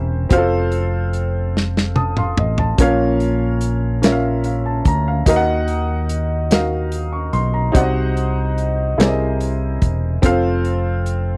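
Moving in a slow 6/8 at 48 beats per minute counted in dotted quarters, this soulful, solemn gospel passage is cut from a longer piece and sits in B-flat harmonic minor. A soul drum kit enters at 0.3 seconds with a tight kick, a medium-tuned snare, hi-hat and toms, its rolled-off top and small-room character giving it a warm, up-front presence. Beneath it, a fingered electric bass plays a round, amped low line, while a mellow baby grand piano with a dark tone carries the accompaniment across a broad range. At 1.5 seconds the drums and piano both play a fill that runs to 2.8 seconds, landing on B-flat minor. The harmony then moves through E-flat minor, C diminished and an altered C7 before settling on F, all captured in a dry, close recording with a 1970s studio feel.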